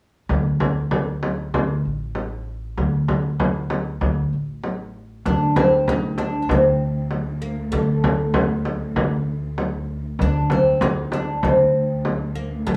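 A small live room with moderate studio reverb surrounds this hypnotic, melancholic Arabic maqam ensemble passage, cut from a longer piece, in D maqam hijaz at 97 BPM in a straight 4/4. A pizzicato upright bass with a woody steel-string tone and an up-front, vintage, band-limited frame drum open together at 0.3 s. A dark, lush symphonic cello section enters at 5.2 s with a bowed, vibrato drone on D2 in the background, and at 5.3 s a bright, fretless, double-strung oud takes the plectrum-plucked melody up front, reaching as high as Eb4+25c.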